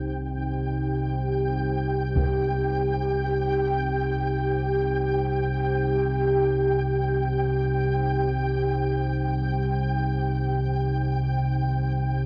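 A deep, rumbling drone in the low register opens this unsettling dark ambient fragment, sounding from the start through to 12.3 seconds. Alongside it, a moody pad holds a sustained C minor chord up front, its detuned saw and sine layers, sub octave and chorus giving it a thick, shifting body. The drone carries an ominous, heavy weight beneath, while high above a grainy, flickering granular texture hovers on a single G, set further back. At 2.2 seconds a very quiet taiko ensemble strikes briefly with heavy sticks in a small acoustic room, gone by 2.4 seconds. The music drifts in free time, tuned to A4 = 442 Hz, bathed in a huge, wet reverb and the warbling pitch drift of worn cassette tape, creating a desolate, suspended atmosphere.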